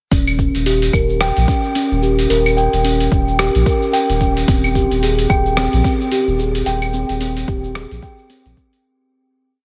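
Peaceful and warm, this short organic downtempo piece moves at 110 BPM in 4/4 with a light 16th-note swing, sitting in Eb mixolydian. A steel tongue drum played with rubber mallets sits up front, its round, pure, ringing arpeggios running in a ten-step loop that drifts against the bar and trails off through tape echo. Beneath it, a deep sine sub bass with tube saturation and sidechain pumping carries a dotted rhythm, while an overdriven electronic kick gives a soft, layered thump. A gritty, compressed sampler-style kit adds shaker, half-open hat, claves and rim clicks, with a dusty tape character as if re-recorded in a small room. The harmony moves from Eb7 to Abmaj7/Eb at 4.5 seconds, the whole dreamy mix soaked in a huge ambient reverb, and a fade-out begins at 5.9 seconds and runs to the close at 8.8 seconds.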